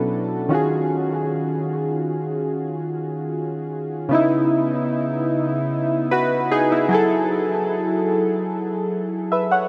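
Soaked in a huge, dreamy ambient reverb, this short cut from a longer piece has a late-night, moody R&B feel at 75 BPM in 4/4, set in C# minor. A lone analog keyboard plays throughout, its round, detuned tone built from pulse and sawtooth waves, with a fast attack, decaying notes, a filter sweep, chorus and tape echo, and it sits up front in the mix. Lush minor eleventh chords give way at 4.1 seconds to C#m9 and F#m9, carrying the evolving sound to its close at 9.7 seconds.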